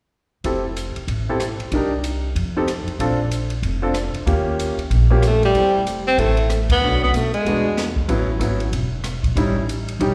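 Small-group swing and bop jazz at a brisk 188 BPM, swinging and sophisticated, where a clear grand piano with plate reverb and slapback echo comps over a woody pizzicato upright bass and an airy, polished drum kit with dark cymbals and a boomy kick, until a breathy tenor saxophone enters up front at 5.3 seconds with vibrato, subtone and scooped notes; the band hits an accent at 6.7 seconds, and the saxophone drops out at 7.9 seconds, all heard live through a club PA with moderate room reverb.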